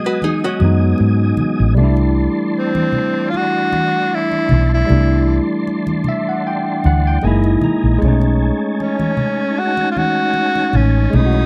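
Sensual and warm, this dry, close-sounding neo-soul R&B passage opens with a dark, clean archtop guitar line that stops at 1.6 seconds, beneath a barky, lightly overdriven electric piano with phaser that adds a fill at 5.7 seconds and a smooth tonewheel organ holding chords through a slow rotary speaker, as low-tuned congas and a round, up-front fretless bass with subtle chorus join before a breathy, whispered tenor saxophone with slapback echo takes the melody from 2.6 seconds.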